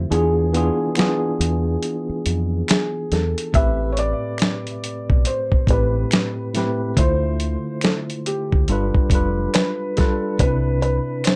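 Lo-fi hip hop at 70 BPM in 4/4 with a swung sixteenth-note feel, this reflective, hazy excerpt is cut from a longer piece and moves through E7b9, Am9, Dm7, G7 and Cmaj9. A worn, slightly out-of-tune tine electric piano carries the accompaniment up front, lightly overdriven through its built-in speakers and coloured by cassette tape, while a deep dub fingered bass sits underneath with a dark, round tone. A felt-muted upright piano plays the melody in a soft, intimate register, its thick felt and audible action noise softened further by analog delay and plate reverb. The sampler-style drum kit is gritty, compressed and tape-warm, re-recorded in a small room, with hi-hat and a medium-tuned snare; its thumpy kick stays muted until 3.5 seconds, when the second section begins on the Am9. Close, dry finger snaps join at 1.0 seconds, adding a human touch over a light reverb.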